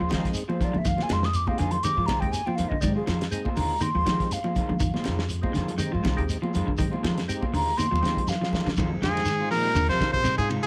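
Afrobeat at 121 BPM in F dorian with a defiant, intense mood, this excerpt opens on a Fm7 chord with an airy, hollow flute solo over picked clean guitar arpeggios with lush chorus, dark slightly broken-up guitar stabs, woody pizzicato upright bass, a percussive tonewheel organ with key click and slow rotary speaker, a dry soul drum kit with a fat snare and dark cymbals, grainy shekere, and high-tuned congas in the background, and after a drum fill ending at 8.8 seconds a bright, punchy trumpet with tape echo takes the melody at 9.0 seconds, shadowed by a breathy, whispered bass trombone, all in light reverb.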